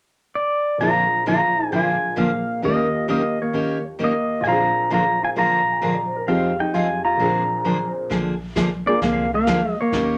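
Western swing country at 132 BPM in a swung 4/4, down-home and cheerful in Bb mixolydian, where an up-front pedal steel guitar carries the melody with clean slide lines and volume swells over a dark hollow-body jazz guitar second line, a picked dreadnought acoustic guitar and a jangly, detuned honky-tonk upright piano, until a woody, thumpy upright bass and a smooth brushed vintage drum kit enter at 8.1 s and the piano drops out at 9.0 s, the whole heard in a small, reverberant room.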